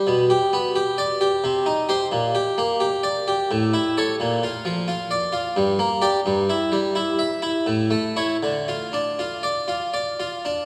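In a flexible triple metre, the pulse drifts between 77 and 88 BPM with a rubato feel, giving this baroque-style suite movement a flowing, solemn character in D minor. A solo harpsichord in the French style carries the whole 10.7-second fragment of a longer piece, spanning from G2 up to E5. Its plucked tone is brilliant and mid-forward, with the added shimmer of octave strings, and it sits up front in the sound. The harmony moves from G/B through Cm, Gm/Bb, A and Bb before passing through Gm, Em/G and A to settle on Dm at 8.4 seconds. A lush church reverb with a long tail of about 3.7 seconds surrounds the instrument and lends the performance a spacious air.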